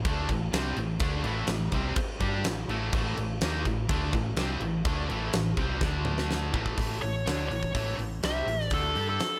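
Energetic and powerful, this hard rock cut from a longer piece drives along at 125 BPM in a straight 4/4. An arena-sized drum kit sits up front with a punchy kick, fat snare, bright crash and hi-hat cymbals, and toms, and it rolls into a drum fill from 5.8 to 6.8 seconds. Three picked electric guitars, one overdriven with spring reverb, one with overdrive and one double-tracked, compressed and distorted, play bright riffs in the background over chords moving from A5 to D5 and back. A dark, round hollow-body short-scale bass, fingered and amped, adds a punchy low end beneath them. At 6.8 seconds the distorted double-tracked riff stops as the music lands on A, and at 7.0 seconds a nasal lead guitar with a parked wah steps up front, overdriven with plate reverb, playing a short melody. A light reverb gives the whole recording a touch of space.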